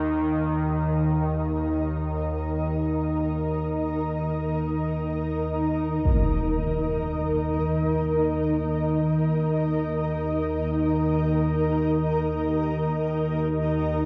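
Cavernous and ominous, this dark ambient drone drifts in free time, cut from a longer piece and running about 14.1 seconds. Down low, an analog drone built from detuned sawtooth and pulse waves with pulse-width modulation sits up front from Eb2 to Eb3, its slow attack and long release giving a warm, evolving body colored by chorus and phaser. Above it, a granular cloud pad holds sustained chords from Eb4 to Eb5, a bright, blurred haze of unison sine and sawtooth voices bathed in its own reverb plus shimmer reverb, centered on Eb5 from the outset. At 6.0 seconds a huge, dark impact lands, muffled by a low-pass filter, marking the turn into the second half. The whole recording sits in an enormous ambient reverb with an 8.2-second decay and the worn, warbling pitch drift of old cassette tape.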